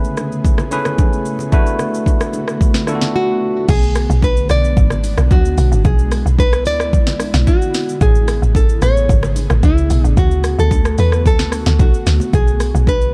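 A hypnotic, late-night amapiano groove opens with a bright, bell-like tine electric piano, an ethereal pad with chorus, reverb and sidechain pumping, and an up-front electronic drum kit with a deep kick and sharp snare, while compressed, saturated bongos and congas sit in the background. During a short silent gap, a delayed, fingerpicked nylon-string guitar melody enters at 3.2 seconds, and at the drop at 3.7 seconds the electric piano gives way to a punchy, woody log drum bass. The dark production keeps the pad cycling through jazzy chords such as Amaj9 and Bm6.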